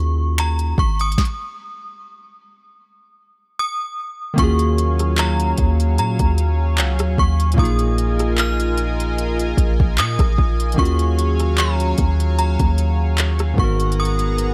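Sensual and longing, this contemporary R&B excerpt sits at 75 BPM in Eb minor with a gently swung sixteenth-note feel, opening on Ebm11 as a chiming, inharmonic FM synth melody with ensemble chorus floats high above round, detuned analog keys that carry chorus and a filter sweep. A deep, dark sine 808-style bass sustains up front, while an overdriven electronic drum kit of finger snaps, handclaps, crisp hi-hat, soft kick, rim click and sharp snare enters at 0.4 s, and a stop falls from 1.2 to 4.4 s. At 4.4 s a shimmering, retro pulse-width pad with chorus and sidechain pumping joins for the move through Bb7sus4 and Abm9, all set in a digital ambience.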